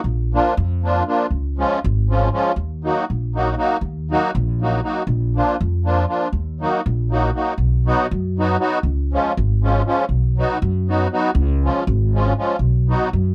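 Driving along in a lopsided 5/8 at 239 BPM counted in eighths, this short cut from a longer Balkan wedding-band tune feels restless and fiery, with a straight, unswung pulse in E-flat minor. An upright bass anchors the low end with woody, thumpy pizzicato on gut strings, sitting up front in the mix. A musette accordion enters at 0.3 seconds as accompaniment, its reedy, shimmering musette tuning giving a vintage, band-limited colour as it holds a close, forward position beside the bass. The opening passage moves through Bb, Db and Ebm before the harmony shifts at 7.6 seconds to a second section that alternates between B and Db. The dry, close sound of a 1970s-style studio keeps both instruments intimate and immediate, with little reverb around them.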